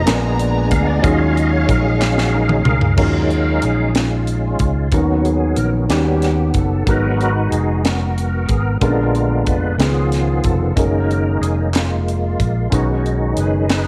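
Solemn and soulful, this slow gospel passage in Eb minor moves at 62 BPM in a straight 6/8 feel, led by a reedy, key-clicking tonewheel organ soloing up front through a slow rotary speaker and chorus vibrato, over an intimate grand piano with audible action noise and a dark, round fingered electric bass. A lush bowed string section adds smooth sustained chords only until 3.0 seconds, as a drum fill from the crisp fusion kit, with its high-tuned snare and punchy kick, runs from 2.0 seconds and carries the music into a new section at 3.0 seconds, while hollow, very quiet group handclaps appear at the start and again from 11.7 seconds. Rich harmonies such as Bb7b9, Ebm11 and Gb69 pass beneath, all set in light studio reverb in this excerpt cut from a longer piece.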